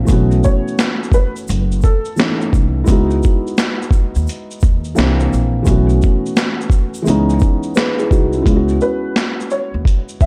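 A swung sixteenth-note groove at 86 BPM in 4/4 drives this reflective, nostalgic lo-fi hip hop excerpt in C# minor, cut from a longer piece. Up front, a compressed, pitched-down boom bap sampler-style kit supplies a thumpy kick, a high-tuned snare, hi-hat and shaker, its gritty sound re-recorded in a large room. Alongside it, a pizzicato upright bass with steel strings gives a woody, dark low end, while a felt-muted upright piano plays soft, intimate accompaniment through cassette tape and a low-pass filter. The chords move through B9sus4, C#m11, C9 and C#m9, and a grainy egg shaker sits distant in the background until 8.3 seconds. A worn, slightly detuned upright piano with short sustain carries the melody through tape echo and a low-pass filter, appearing from 0.4 to 2.4 seconds and returning at 8.8 seconds for the closing section. The whole is captured as a dry hardware recording in a small room.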